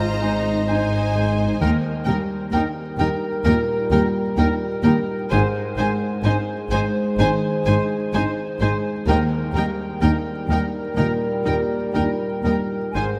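Bittersweet and sorrowful, this cinematic excerpt drifts in rubato at 64 BPM in a vast cathedral space, where a felt-muted upright piano with audible action noise accompanies lush violins carrying the melody, second lines from violins, a hollow flute and an oboe with a smooth top, soft viola accompaniment, mellow French horn chords, and a bass of dark, woody cellos and warm double basses, moving between Ab and Eb.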